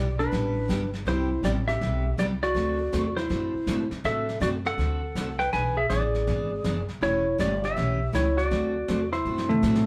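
A bright, twangy clean lap steel guitar sits up front and carries the melody of this playful, swinging western swing excerpt at 161 BPM in 4/4, moving over a G6, Cmaj7, D7, E7 and A7/E progression. A full-bodied picked dreadnought acoustic guitar with fresh strings picks out the accompaniment, while a woody, growly upright bass thumps out the low end. A dark, smooth brushed drum kit with a rolled-off top enters at 0.2 seconds and closes with a fill at 9.3 seconds, the whole band sounding live together in a large studio room with moderate reverb.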